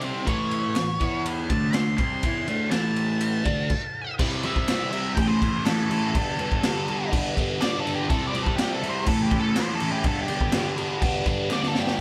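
A raw, swaggering garage rock excerpt opens with an octave-fuzz lead guitar taking a solo over a crunchy, overdriven rhythm guitar riff and a raw, up-front drum kit, all at 123 BPM in a straight 4/4. The dark, distorted lead sits high, from G4 to C6, while the double-tracked, picked rhythm guitar carries the riff lower down through a phaser, moving from A through E5, D5 and A5 chords before the band stops together at 3.7 s. When the next section arrives at 4.2 s, the riff shifts to a C, A and G progression that repeats. The acoustic drums have a punchy kick, a medium-tuned snare, dark cymbals and a rolled-off top, with a gritty, saturated, pumping small-room sound, and a drum fill closes the passage at 11.5 s. A very quiet, crisp group handclap runs from 0.8 s to 11.6 s, and a moderate reverb gives the whole thing the feel of a band playing live in one room.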